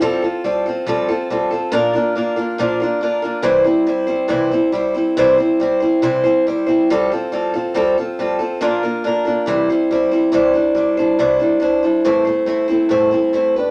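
Rock at 140 BPM in a straight 4/4, this short passage from a longer piece carries a warm, open-road mood, moving from C mixolydian to C major at 10.3 s. A lone picked acoustic archtop guitar sits up front throughout, its woody, boxy tone colored by old strings, ranging from A2 to C5 through chords of Fadd9, Bb and C before shifting to Cadd9 and Am. A wet studio reverb with a short tail gives the guitar a sense of room.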